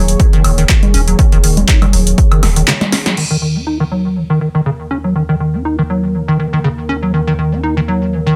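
Hypnotic and gritty, this short cut of acid house moves at 121 BPM in Eb minor with a light 16th-note swing. A squelchy, hollow square-wave acid bass drives a resonant, plucky riff up front throughout, coloured by tube saturation, analog chorus and digital delay, while a smooth sawtooth pad holds sustained chords beneath it with chorus, 12-bit sampler grit and sidechain pumping. A round sine sub bass anchors Eb1 for the first 2.6 seconds, and an overdriven electronic kick punches up front until 2.3 seconds. A punchy analog drum machine adds congas, handclaps, hi-hat, snare, woodblock and crash cymbal, with a short room on the snare, clap and hats, before a drum fill and brief break lead to a band accent at 3.0 seconds. From there the second section leaves the acid riff and pad alone, with a filter sweep moving across the pad under a light reverb and a dense, heavily limited master.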